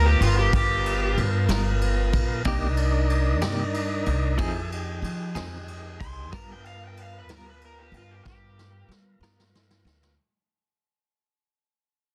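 An up-front, overdriven slide guitar sings a mournful solo over a smoky slow blues in 12/8, backed by sustained tonewheel organ chords through a slow rotary speaker, woody pizzicato upright bass, a dark-cymbaled brush kit with a punchy kick that closes on a fill from 8.3 seconds, and a compressed, picked clean electric guitar with tremolo joining at 1.5 seconds, all in a dry, dense, heavily limited fade-out moving from G7#9 through Cm7 and Fm7 back to G7#9.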